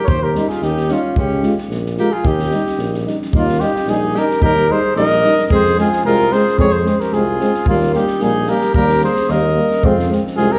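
Swung sixteenths over a brisk 2/4 at 111 BPM drive this festive, wild Balkan brass band excerpt in Eb mixolydian, where an up-front flugelhorn carries the melody above a clear, vibrato-laced alto saxophone second line, a tuba bass with light vibrato and a smooth top, a dark, breathy trombone and a soft-attack euphonium in the background as accompaniment, and a compact cocktail kit with a punchy kick and high-tuned snare, the band heard from further back in a recital hall's wet reverb as the harmony moves among Eb, Db and Fm.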